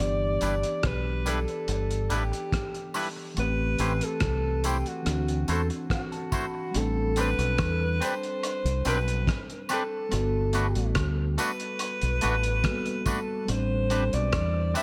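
An alto saxophone with vibrato carries the melody up front in this smooth, romantic lovers rock reggae excerpt in G major at 71 BPM, its roomy tone trailed by tape echo. A mellow tine electric piano, also given tape echo, moves through chords from G6 through Am7 and D9 and adds a fill at 5.5 seconds, while a deep, round dub bass sits punchy underneath. From 0.4 seconds a twangy, clean electric guitar plays stabs, a muffled, gritty drum kit with tight kick, hi-hat and rim click carries gated reverb, and a tambourine and woodblock, with their own tape echo, sit quietly in the background.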